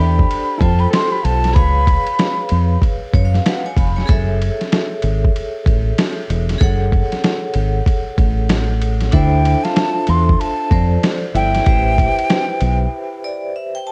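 Jazz-hop excerpt at 95 BPM with a mellow, cool swing, where a gritty, pitched-down boom bap sampler kit with a thumpy kick and a round, dark fingered dub bass sit up front, bright hard-mallet vibraphone rings throughout with ringing fills, and a breathy, expressive concert flute melody is joined by a clean electric guitar line in the background that carries spring reverb, both returning at 9.1 seconds before the vibraphone plays a short fill over the break at 12.9 seconds, all with a cassette-tape home-recording haze.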